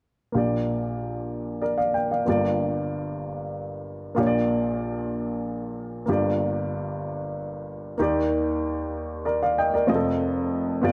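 A moderate echo-chamber reverb with a 2.1-second decay surrounds a solo baby grand piano that sits up front, its tone warm and intimate, with the natural noise of the action audible and a short sustain on each note. This is a hopeful, uplifting gospel fragment, cut from a longer piece, in Bb major at 63 BPM counted in dotted quarters, with a straight 6/8 lilt and the instrument tuned to A4 = 444 Hz. The piano covers a broad span from F1 up to G5 and plays alone from 0.3 s to 10.9 s. The harmony opens by moving between Bb6 and Gm7. A second passage begins at 4.2 s, repeats that pair, and then moves through Ebmaj7 to a closing F7.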